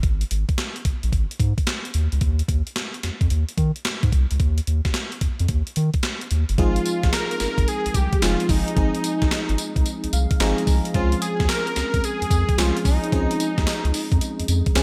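A gated 80s digital drum machine sits up front in this upbeat, flirty R&B and new jack swing groove, with its thumpy kick, gated-reverb snare, handclaps, hi-hat and tambourine riding a swung feel over a round, deep analog bass from the start. At 6.6 seconds a glassy, bell-like FM electric piano with chorus enters alongside a thick, detuned sawtooth unison lead that carries the melody through analog delay, and the piano adds a fill from 9.9 to 10.9 seconds. The whole track is cut from a longer piece and is set in light reverb.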